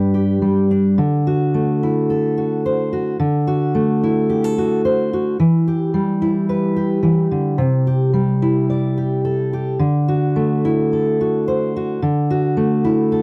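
A fingerpicked steel-string acoustic guitar plays alone for about 13 seconds in this peaceful folk excerpt, its full-bodied jumbo tone sitting up front in a dry, close 1970s-style studio sound with small room ambience as it moves through G, Dadd9, Em and C in a straight 4/4 feel.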